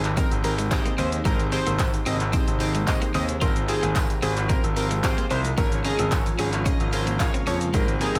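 This dry, close-sounding dance-pop excerpt, with little reverb, has a summery, upbeat feel in a straight 4/4. A punchy analog drum machine sits up front with handclaps, hi-hat, kick drum and shaker, re-recorded in a small room. A clear concert grand piano carries the bass with a deep, polished tone, short sustain and sidechain pumping. Round analog keys, built from detuned pulse, sawtooth and triangle waves with ring modulation, a filter sweep and chorus, play the accompaniment and also pump, over a very quiet shimmering pad of sine tones with octave-up shimmer, granular texture and its own reverb. From 0.2 s a bold, retro, octave-doubled sawtooth lead carries the melody with vibrato, chorus, pumping and dub echo. Entering at the same moment are a slightly broken-up, picked electric guitar riff in the background and a faint, jingly tambourine, while the harmony moves from Abmaj7 to Fmadd9/Ab at 3.4 s and Bbm7/Ab at 5.6 s.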